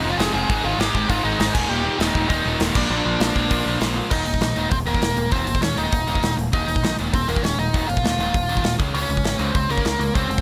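Guitars and a growling, overdriven picked bass open this upbeat, energetic punk rock excerpt at 199 BPM in a straight 4/4, with a big acoustic drum kit joining at 0.2 s, its bright cymbals, medium-tuned snare and punchy kick up front in a big room. Leading the way is a nasal lead guitar with a parked wah, overdriven and touched with tape echo, carrying the melody up front from Bb3 to Ab5. Behind it, a biting overdriven guitar with a mellow edge plays a riff throughout, while two bright distorted guitars add riffs of their own, one sitting in the background and the other double-tracked and very quiet, both dropping out around 4 s. The harmony moves through Ab, Eb and Bb before shifting at 4.1 s to a new section built on Eb5 and Db5 power chords. Light reverb gives the band a sense of space, and the track is cut from a longer piece.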